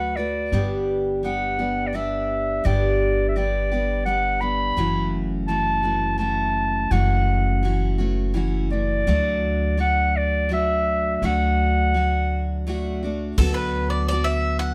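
This haunting, wistful acoustic folk piece opens with a clear, vintage-toned clarinet singing the melody in a classical style over picked, full-bodied steel-string guitar and a woody pizzicato upright bass. It moves at 84 BPM in a straight 3/4, with the chords passing from D6 through G, F#m7 and D. The clarinet sits up front with a touch of plate reverb and carries the tune until 12.7 seconds. At 13.4 seconds a new section begins on D6, and a bright, double-strung bowl-back mandolin takes a short solo. A soft brush drum kit joins at the same moment, adding crash cymbal, hi-hat and a punchy kick. Light reverb gives the small band an intimate studio feel, and the recording is cut from a longer piece.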